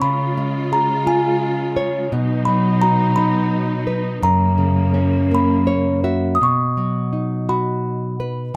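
Swaying gently in a rubato 6/8 at 57 BPM in dotted quarters, this short cut from a longer children's lullaby in B major feels gentle and sleepy, with a tinkling, slightly out-of-tune music box carrying the melody high above a bright, fingerpicked nylon-string guitar that sits up front as accompaniment. A distant, lush string section with vibrato holds sustained chords beneath them until 6.4 seconds, while the guitar adds a fill from 5.3 seconds just before the harmony settles on B. A moderate small-room reverb gives the whole a cozy, intimate air.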